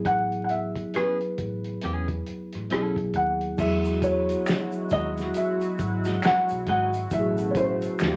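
Wrapped in wet studio reverb and vinyl crackle, this sensual neo-soul R&B excerpt at 68 BPM in E major sets a felt-muted, boxy upright piano melody over a worn, slightly out-of-tune tine electric piano, a round foam-muted electric bass and a cloth-damped, lo-fi drum kit with a fat snare, finger snaps and dark cymbals, while a clean, picked electric guitar enters at 1.0 seconds and a shimmering chorused pulse-width pad and close, dry egg shaker with handclaps join at 3.6 seconds as the chords move from Amaj7sus2 toward Emaj9.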